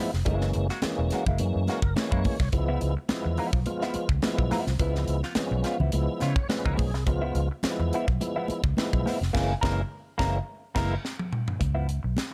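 A dark, close-sounding mix with little reverb carries this playful, energetic funk cut from a longer piece, moving at 106 BPM in a straight 4/4 over Gb9 and Db7#9 chords. A round, foam-muted vintage electric bass and a crisp fusion kit with a punchy kick and high-tuned snare sit up front, while a compressed clean electric guitar runs through wah and plate reverb, and a tonewheel organ with key click, chorus vibrato and fast rotary speaker adds stabs and fills at 1.4 and 5.9 seconds. Damped, high-tuned congas with a thick skin sit in the background, and the band hits an accent from 9.3 seconds before a drum fill at 11.0 seconds.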